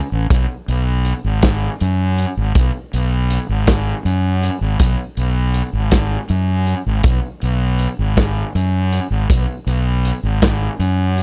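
Psychedelic rock in a slow 6/8 at 53 BPM, dark and mysterious, cut from a longer piece. A fuzz-drenched fingered electric bass enters at 0.1 seconds, round and punchy with a heavy overdrive in its low register, joined at 0.3 seconds by a raw garage drum kit of hi-hat, punchy kick and medium-tuned snare, saturated and rolled off at the top with a stone-room brightness. Both parts sit up front in a dry, close 1970s-style studio sound.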